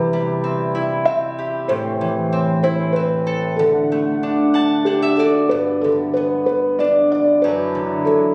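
Caught on a phone in a moderately reverberant scoring stage and then given studio reverb and compression, this gentle, sleepy children's lullaby excerpt sways in 3/4 at 94 BPM in G major, with a felt-muted upright piano carrying the intimate, dark, thick-felt melody, an up-front, ringing concert harp fingerpicking the accompaniment and adding a fill from 4.2 to 5.5 seconds, and a quieter, reedy accordion with slow beating holding sustained chords through a C, Am, D progression that moves to G and Dadd9/F# once the second section arrives at 5.5 seconds.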